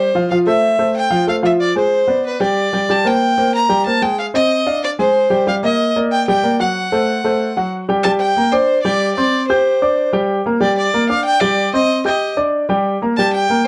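A dark, warm production with moderate studio reverb frames this passionate, fiery Latin excerpt in G minor, moving at a brisk 186 BPM in straight 4/4 and tuned to A4 = 442 Hz. A single bowed violin carries the melody, clear and earthy with light vibrato, sitting up front yet with a distant quality. A present baby grand piano plays the accompaniment through richly colored chords such as Fmaj7, Dm7b5 and Ebmaj7, before the harmony settles around Gm, D7sus4 and Cm from 8.0 seconds.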